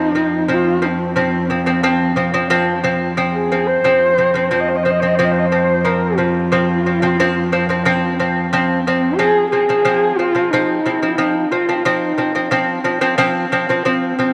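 Mongolian folk in a solemn, vast mood at 90 BPM in F yu mode, where a dark, husky horsehead fiddle sings the bowed melody with vibrato and portamento over bright, fingerpicked lute arpeggios sitting up front and a rich, earthy cello drone on F that drops away at 9.2 seconds, the whole excerpt bathed in a long, wet plate reverb.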